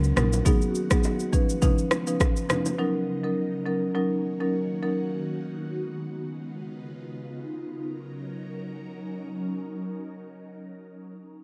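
At the start, a woody marimba with rosewood bars and an electronic, tape-warm afro-pop drum kit come in up front together, the kit's deep kick joined by rim click and shaker. Behind them, ringing acoustic congas and bongos sit in the background with a small-room sound. This breezy, sunny afrobeats excerpt moves at 103 BPM in F# major with a light swing on the sixteenths. The drums and hand percussion drop out at 2.8 seconds, and the marimba stops at 5.0 seconds. That leaves an ethereal, airy pad of detuned sawtooth and triangle tones with a noise layer, full-bodied and treated with ensemble chorus, phaser and its own reverb, to hold slow-attack chords alone until 10.5 seconds. The harmony cycles through G#m7/D#, C#9, F#6 and D#m7, and the overall sound is dry and close.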